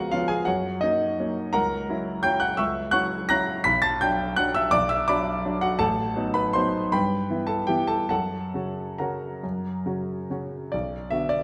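Set in a wet recital-hall reverb, this bittersweet, wistful excerpt of a classical piano waltz in B minor features a clear, natural concert grand placed up front with a deep bass, playing solo across a range from A1 to B6 in a rubato 3/4 that moves between 132 and 178 BPM, its harmony passing from F# through Bm and Em/G before settling on Bm at 10.7 seconds.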